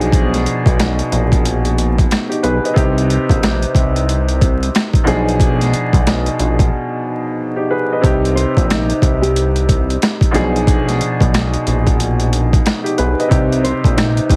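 Moody and gritty, this boom-bap hip-hop excerpt swings on the 16ths, led by an overdriven, sampler-style drum kit of thumpy kick, medium-tuned snare, rim click and hi-hat sitting up front beside a fat, detuned sawtooth bass with a filter sweep. A woody upright piano with long sustain plays the accompaniment through cassette-tape coloring and plate reverb over chords moving between Bb13b9 and Cm, and after a break at 6.7 seconds a thumb-plucked classical nylon-string guitar enters at 8.4 seconds with the melody, touched by plate reverb and delay. The mix carries a heavily compressed radio sound and vinyl crackle.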